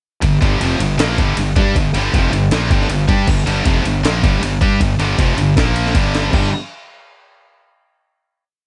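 A straight, driving 4/4 pulse comes from a sampler-style drum kit that sits up front: compressed, pitched up and gritty, with a thumpy kick, a medium-tuned snare, crash and ride cymbals, and a half big groove that sounds re-recorded in a small room. This short, aggressive hard rock piece runs on a single power-chord riff from 0.2 seconds, played by two picked, high-gain electric guitars. One guitar stays bright and in the background, while the other has a scooped tone. A fingered electric bass, fuzzy, growly and punchy, drives eighth notes up front and doubles the guitar riff. A drum fill at 6.1 seconds leads into a final chord at 6.3 seconds that rings out to the end. The mix is dry and close, with a darkened top end.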